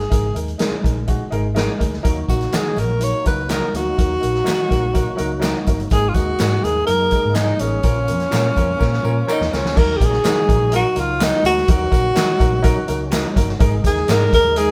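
Uptempo 1960s-style soul with a driving, passionate feel, cut from a longer piece and played by a band live in one room with moderate studio reverb. A breathy tenor saxophone carries the solo melody up front, its soft attack, vibrato and scooped notes giving it a jazz-style voice. A swinging big-band drum kit sits roomy and distant yet forward, with crash, hi-hat, a punchy kick and a medium-tuned snare under a rolled-off top. A dark, round, foam-muted fingered electric bass anchors the low end, while an intimate baby grand piano with audible action noise and short sustain plays accompaniment. A slightly broken-up, lo-fi electric guitar adds picked stabs in the background, and from 2.1 seconds a fat, lightly overdriven tonewheel organ with key click and a slow rotary speaker holds very quiet sustained chords, joined by tube shaker, tambourine and group handclaps further back. A drum fill at 8.8 seconds leads into a new section at 9.8 seconds.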